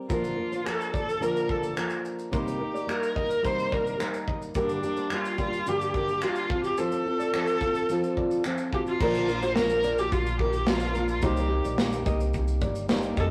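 Easy-going and sunny, this acoustic pop excerpt moves at 108 BPM in a straight 4/4 in Bb major, cycling through Bb, Cm7, Gm and F. A fingerpicked, plugged-in jumbo steel-string guitar sits up front with a full-bodied, woody tone from old strings, while a small nylon-string guitar plays fingerpicked arpeggios in the background. A single bowed viola carries the melody up front, rich and expressive with vibrato and portamento, though it sounds distant. A modern studio drum kit adds a punchy kick, a medium-tuned snare, shaker, finger snaps and crash cymbal, its top rolled off. At 9.0 s a dark pizzicato upright bass with steel strings and a very quiet felt-muted upright piano, mellow and intimate with audible action noise, join in until the cut at 13.3 s. The recording sits in a moderate stone room reverb with a rough rehearsal-room character and warm saturation.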